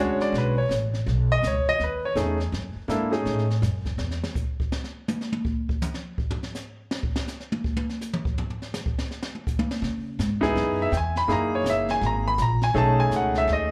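Relaxed and sophisticated, this swinging jazz piano trio fragment, cut from a longer piece, sounds like a live club gig heard through the venue's PA. A clear, intimate grand piano carries the melody with audible action noise and a slapback echo, over a woody pizzicato upright bass, while the brushed drum kit with its high-tuned snare and boomy kick enters at 0.2 seconds and plays to the end. The piano drops out at 3.4 seconds and the bass at 4.2 seconds, framing a brushed drum solo from 4.0 to 9.8 seconds. The bass then returns at 9.8 and the piano at 10.4 seconds.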